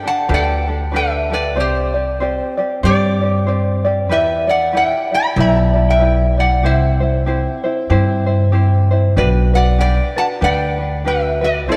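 Hawaiian music at 95 BPM in G major with a light swing, this languid, dreamy excerpt from a longer piece features a bright, nasal metal-body resonator slide guitar carrying the melody with fingerpicks over a fingerpicked tenor ukulele and a woody, thumpy pizzicato upright bass on gut strings that enters at 0.3 seconds, all placed up front yet heard from further back in a room bathed in a long, wet plate reverb.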